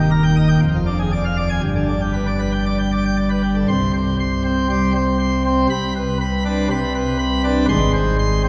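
Classical organ toccata, dramatic and majestic, in which a solo pipe organ on full plenum with bright mixtures and a crisp baroque chiff sounds up front across a range from low pedal depths to gleaming treble, its chords of Eb, G, Csus2 and Ab rolling through a wet church reverb with a 3.3-second tail in this brief excerpt cut from a longer piece.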